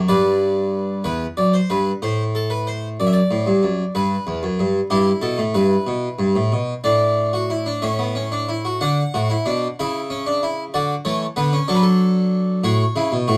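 Lively and joyful, this brief cut from a baroque-style three-part fugue in 6/8 features a solo harpsichord placed up front, its plucked, full French-style voice sounding on two sets of strings across a broad range, set in a dark studio production with moderate reverb and moving into a new section at 8.8 s.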